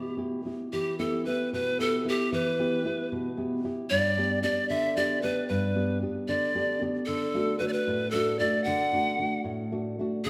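A breathy, bright pan flute and a nylon-string guitar begin together in this wistful, melancholic Andean folk excerpt in E minor, cut from a longer piece and moving at 76 beats per minute in a straight 6/8. The bamboo flute carries the melody between G4 and F#5, its reedy tone marked by vibrato, tongued attacks and a clear chiff, heard close and up front. Beneath it the guitar supplies accompaniment from G2 to G4, dark and woody with the full-bodied, thumb-plucked sound of old classical strings, sitting just behind the flute in level. The harmony moves from E minor to G at 3.9 seconds and on to D at 7.1 seconds. A wet recital-hall reverb with a 1.7-second decay surrounds both instruments, lending the intimate pair a lingering, spacious sadness.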